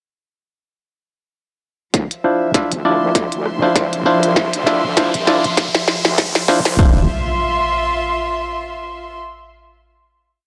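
Playful and gritty, this short glitch hop piece is a single build over Dm9 that ends on a held final chord. From 1.9 seconds a punchy, overdriven electronic kick and a glitchy kit of tiny snare, rim clicks and clicky closed hats drive a swung beat with edits, both re-recorded in a small room, with the kit placed up front and a drum fill running through the whole build. A heavy, detuned wobble bass sits in the background with saturated, chorused phrases whose wobble speed changes, while a percussive, stringy clav plays a close-voiced rhythmic chord riff through a combo amp, carrying 12-bit sampler crunch, tape echo and a filter sweep across the build. Beneath them, an intimate chamber string section plays slowly shifting bowed chords with light vibrato and a sul tasto softness, pumping with the sidechain. A riser enters at 3.4 seconds and leads into an impact, and the final chord from 6.8 seconds rests mainly on the strings and that impact, captured as a dry hardware recording with light reverb.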